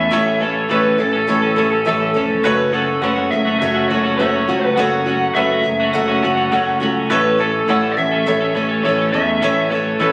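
A dark, overdriven lead guitar with slapback echo carries the melody over a woody, boxy old acoustic guitar and a twangy, compressed twelve-string electric riff. This is open-road folk rock and heartland rock in a straight 4/4, moving from A to F#m and back to A. A punchy, direct electric bass anchors the low end, and a clear baby grand piano with short sustain sits in the background, all caught on a phone in a small room with light club reverb.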